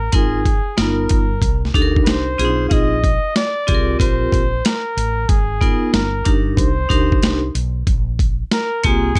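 A warm flugelhorn with scooped notes, slapback echo and plate reverb opens this mellow, cool jazz-hop excerpt over a round, woody fretless electric bass with subtle chorus, joined at once by a bright, ringing vibraphone with hard mallets and slow motor vibrato and a compressed, pitched-down boom bap drum kit with 12-bit grit, a thumpy kick, a high-tuned snare and hi-hat in a swung groove. After the harmony moves through Cm9 and Gm11, the flugelhorn takes a jazz-style solo at 7.9 seconds over Bbsus2.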